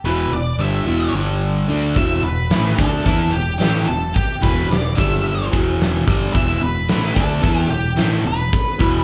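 An overdriven, double-tracked semi-hollow guitar drives a bright, picked riff up front in this smoky, brooding blues rock power trio excerpt with a southern rock edge at 110 BPM in E minor, joined from the start by a growling fingered bass with overdrive and a dark octave-fuzz lead guitar carrying the melody, while a big acoustic rock kit with a fat snare, punchy kick and rolled-off top enters at 2.0 seconds, the whole band playing live together in a large studio room with moderate reverb.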